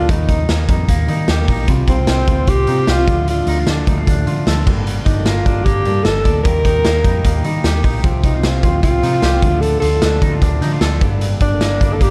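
Dark, lightly reverberant production frames this restless, wistful excerpt of jangly indie pop, where a breathy alto saxophone with light vibrato carries the melody through plate reverb and tape echo over a background fingerpicked jumbo acoustic guitar, twangy, slightly broken-up electric guitar arpeggios, a round foam-muted electric bass and a gritty, saturated garage drum kit that sits up front with a punchy kick in a pumping stone room, all cycling through Eb, Csus4, Dm and Gmadd9.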